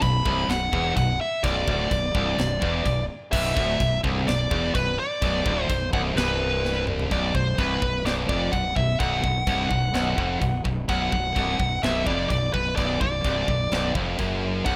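A nasal, up-front lead guitar with a parked wah, overdrive and delay carries the melody through this epic, relentless heavy metal excerpt in B phrygian at 127 BPM. Beneath it, two bright high-gain guitars grind out the riff in the background beside a growly, punchy fuzz bass, while a very quiet, double-tracked crunchy guitar adds its riff only until 7.1 seconds, bowing out as a drum fill from 6.6 seconds ends on the tight acoustic kit with its high-tuned snare and china and crash cymbals. The rough home-demo mix sits in a small room with light reverb.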